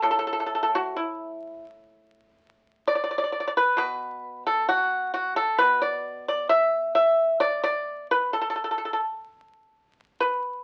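The recording has the crackle of a very old 78 rpm record, with a moderate studio reverb around the performance. A lone pipa plays throughout this 10.6-second fragment of a longer piece of Chinese traditional music, a serene, pastoral passage in A zhi mode. The tempo sits near 65 BPM in 4/4, though the rubato phrasing lets the pulse breathe freely. Played with fingerpicks, the pipa sounds percussive and dry, placed up front, with a warm body as it moves across a span from A2 to E5. The solo instrument and the aged surface noise give the music an intimate, old-world feel.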